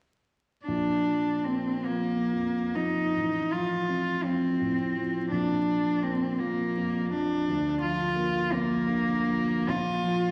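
A wet concert hall reverb and a thread of vinyl crackle frame this brief excerpt from a longer classical romantic duo for cello and grand piano. The mood is lyrical and serene, moving in 6/8 with a free, rubato feel. A rich, smooth cello carries the melody close and up front, played bowed by one player with an even vibrato in its middle register. Beneath it, a dark, mellow, vintage baby grand piano supplies the accompaniment with long sustain, reaching down into deep bass notes. Both parts play together from 0.7 to 10.3 seconds, settling on a Bb chord at the close.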